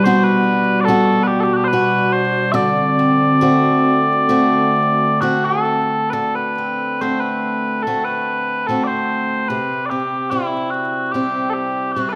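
A nostalgic, tender Celtic slow air opens with sweet, mellow small bagpipes carrying the melody up front, a dark, picked swing-style acoustic guitar accompanying, and a warbling lo-fi pad holding sustained chords with chorus and its own reverb, all moving in a loose rubato over Gmaj7 and D7 harmonies. The pad drops out at 6.1 seconds as the phrase repeats, leaving the pipes and guitar to settle onto a C chord at 9.5 seconds. A wet recital hall reverb and vinyl crackle wrap this brief excerpt, cut from a longer piece, in a gentle, timeworn glow.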